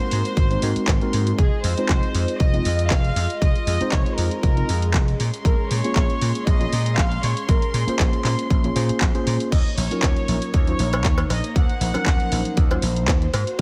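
Nu-disco in Eb dorian at 118 BPM with a light 16th-note swing, this groovy, cosmic fragment sets a reedy, gut-string violin section melody with delay over hushed sul tasto chamber strings and a worn, slightly out-of-tune tine electric piano, both pumping against the sidechain. A punchy, amped vintage slap bass and an up-front electronic kick drive the groove beneath a pop kit of crash, handclaps and warm hi-hats, with a dry, close cowbell joining at 10.9 seconds. Chords move from Ab9 through Fm7 and Bbm9 to Ebm7 in a small room ambience.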